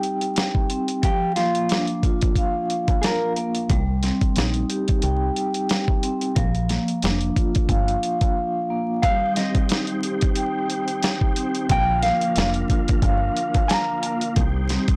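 Boom-bap hip-hop in C minor at 90 BPM, this reflective, dark excerpt rides a lightly swung 16th-note groove while the harmony moves between Cm and Bb. A gritty, compressed sampler-style drum kit sits up front for the full 15 seconds, with a thumpy kick, medium-tuned snare and hi-hat, alongside a ringing, metallic vibraphone played with soft mallets and a medium motor vibrato, filtered and washed in plate reverb. A dark, clean electric guitar carries the melody in two phrases, first from 1.0 to 3.3 seconds and again from 9.0 seconds, treated with delay and plate reverb. The deep, round dub bass, foam-muted and given tube saturation, enters at 3.7 seconds after an opening break. In the second section a smooth tonewheel organ adds quiet sustained chords through chorus vibrato and a fast rotary speaker. The whole recording is blown-out and overdriven, with vinyl crackle and a light room reverb.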